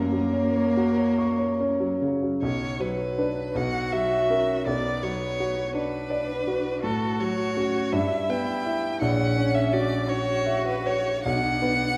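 A wet recital hall reverb, with a 1.4-second tail, surrounds this short passage from a slow, romantic movement for piano trio, giving it a solemn, melancholic air. The pulse moves in six-eight with uneven beats and free rubato. A rich, up-front solo violin carries the bowed melody with vibrato, while a focused, closely heard cello sings a bowed second line beneath it, also with vibrato. A smooth, vintage-toned grand piano, up front and a touch louder than the strings, supplies the accompaniment across a broad span of the keyboard. After a brief opening phrase of about 2.4 seconds, the music moves into a longer section that settles back onto its home chord at 11.2 seconds.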